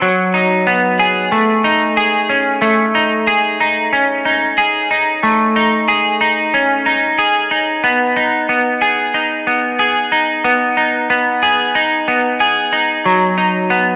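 Dreamy and floating, this 14-second dream pop excerpt features a lone semi-hollow electric guitar, picked clean and bright with a hollow-body ring, sitting up front and colored by analog chorus and analog delay. Set in a straight 4/4, it moves from G#m7 to Amaj7#11 at 1.3 seconds, shifts to B6 at 7.8 seconds and returns to G#m7 near the close. Light reverb and a digital ambience surround the otherwise dry, gritty hardware sound.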